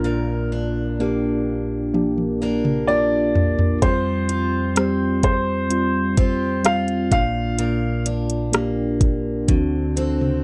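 A heartfelt, hopeful pop ballad excerpt at a slow 64 BPM in 4/4, where a warm, open baby grand piano with long sustain and slapback echo carries the melody until 8.0 seconds over a mellow, clean tine electric piano with analog chorus, full-bodied picked steel-string acoustic guitar arpeggios with audible finger squeak, and a very quiet electronic downlifter and swell, while a smooth, produced R&B drum kit with a knocking kick and metallic hats enters at 1.9 seconds with a fill as the chords move from Bb through Fsus2 to a closing D7, heard in a dry, close 1970s-style studio recording with light reverb.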